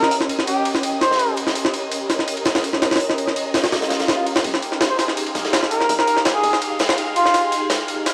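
Drum and bass with a jungle edge at 166 BPM in F minor, frenetic yet nostalgic, where gritty, pitched-up sampler breaks with a thumpy kick sit up front over a big-room acoustic kit in the background, a silky string machine with phaser and ensemble chorus holds chords from Eb7 to Fm9 under a filter sweep, a veiled cup-muted trumpet with dub echo plays a soft solo melody at 0.0 and again from 4.9 seconds, a faint twinkling granular shimmer stops at 4.5 seconds, and an electronic swell leads into a build-up that ends in a drum fill, all steeped in cassette tape character and a wet spring reverb.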